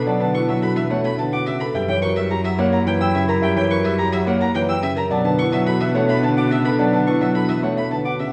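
Opening at once, a boxy, mellow baby grand piano carries the melody over woody marimba arpeggios, expressive vibrato-laden violin arpeggios with portamento, a soft-attack clarinet second line sitting in the background, and a rich, smooth bowed cello bass, joined at 0.1 seconds by a dark, long-sustaining grand piano accompaniment, in this urgent, hypnotic fragment of minimalist classical pattern music in 3/4 at 107 BPM in B minor, moving from Bm11 to F#7b9 and back, heard from further back in a wet recital hall.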